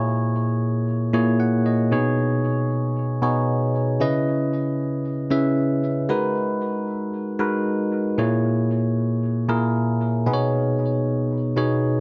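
Worn, warbling cassette tape gives this soulful, hypnotic amapiano fragment a drifting pitch and a light reverb, cut from a longer piece and moving at 115 BPM with a gentle swing on the sixteenths. A bell-like tine electric piano plays entirely alone from 0.0 to 12.0 seconds, its bright, clean tone sitting direct and up front while phaser and tape echo colour each chord. A short piano fill arrives between 1.1 and 1.9 seconds, and the harmony cycles through A#m7b5, B69, C#m7 and G#m9 before returning to the opening pair.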